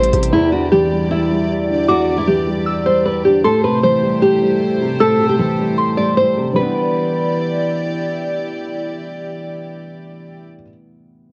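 A half-time hip hop groove drives this dark, hard-hitting fragment, where an up-front, full-bodied, fingerpicked nylon-string guitar with audible finger squeak carries the melody through a low-pass filter and tape echo until 7.7 seconds, a felt-muted upright piano adds boxy, mellow accompaniment through 11.3 seconds, a bowed studio string section floats soft sul tasto chords beneath, and a gentle FM synth bell with chorus and tape echo traces a high second line from 0.3 seconds, all colored by cassette tape and light small-room reverb for a homemade sound.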